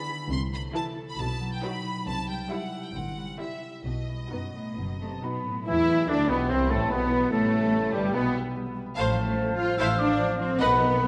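A wet, reverberant orchestral classical excerpt in E minor at 129-149 BPM, dramatic and restless, where a lush bowed violin melody with vibrato rides over a rich background second violin line, clear violas, bright ringing harp arpeggios, an expressive cello section and distant double basses, until an airy flute enters at 5.0 s and at 5.7 s a dark, very quiet clarinet, an oboe and a mellow bassoon join a roomy French horn section holding sustained chords.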